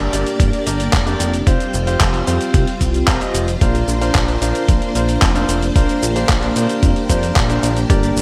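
Italo disco at 112 BPM in a straight 4/4, this bittersweet, melodramatic clip sets lush string-machine chords with ensemble chorus and bright grand piano stabs over a glossy, detuned synth bass with tube saturation, while a gritty, overdriven sampler-style kit of cabasa, handclaps and hi-hat with gated reverb is joined by a thumpy electronic kick that enters at 0.4 seconds, all moving through Gm, Fsus2 and Bbadd9 in a light reverb.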